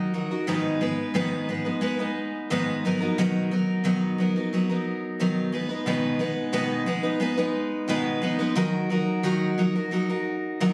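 A full-bodied, up-front picked steel-string acoustic guitar plays alone through this tender, reflective pop excerpt of about 10.7 seconds at 89 BPM in G# minor, moving from G#m through Bmaj7 and G#m/B to D#m, captured on a phone in the room with moderate studio reverb and compression.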